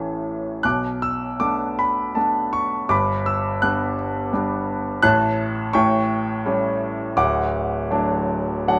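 Intimate and polished with light reverb, this brief excerpt of tender, calm classical solo piano in D major sways in rubato 3/4 at around 74-86 BPM, its clear grand piano sitting up front with audible action noise and long sustain as it spans D1 to F#6, moves from A through Bm7 and G, drifts through a brief chordless passage, then passes through A7 to D, and closes with a short fill at 8.3 seconds.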